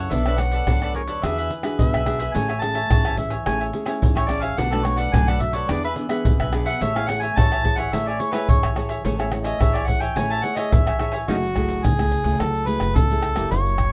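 Festive and joyful, this samba-choro excerpt features an amplified, overdriven harmonica up front, soloing with a gritty, punchy tone and tongue slaps until 11.3 seconds. It plays over a crisp, picked cavaquinho, a fingerpicked classical nylon-string guitar on old strings, and a dark, thumpy pizzicato upright bass with gut strings. Egg shaker, deep surdo, pandeiro and tamborim sit close in a small room, while the harmony moves through Bm9, E9 and Amaj7, then Bm7, E7 and Amaj7, before shifting to F#m9 as a new section begins at 11.3 seconds, where the cavaquinho stops.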